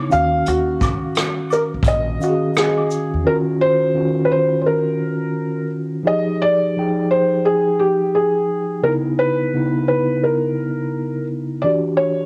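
Lo-fi hip hop with a reflective, nostalgic swing, cut from a longer piece, in which a soft, felt-muted upright piano carries the melody through cassette tape over a mellow, clean tine electric piano, while a woody pizzicato upright bass, a roomy vintage brush kit with tight kick, rim click, hi-hat and shaker on cassette, and a distant tube shaker and woodblock in the background drop away by 3.2 seconds, leaving the two pianos alone in a small, lightly reverberant room until 12.3 seconds.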